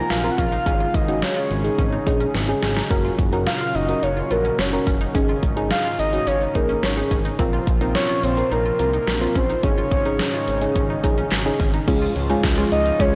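A blown-out, overdriven recording set in a moderate scoring-stage reverb carries this bright, nostalgic synth-pop cut from a longer piece, with a punchy, layered electronic pop drum kit up front, a drum fill at 2.3 seconds, and handclaps, metallic hats and a deep snare. A soft, round, octave-layered synth lead with vibrato sings the melody through chorus, phaser and delay, over a mellow, warbling FM electric piano, a smooth sawtooth synth bass and a detuned analog pad holding sustained chords in the background. A bright analog pluck adds delayed arpeggios further back as the chords cycle through Bbsus2, Absus4 and Gb, before the harmony settles on Db at 11.9 seconds.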